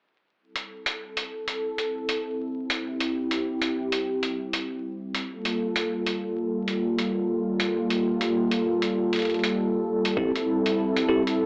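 Dry, lo-fi hardware grit, vinyl crackle and an AM-radio tint sit over a moderate plate reverb in this funky glitch hop excerpt, which swings its sixteenths. An up-front, detuned sawtooth pad with a soft attack, chorus and sidechain pumping holds sustained chords from Am7 to Gm9 under a filter sweep, while a pitched-down, compressed sampler hi-hat ticks along throughout. At 10.2 seconds, as the harmony returns to Am7, a thumpy kick lands once beneath bright, bell-like tine electric piano stabs treated with phaser, tape echo and pumping.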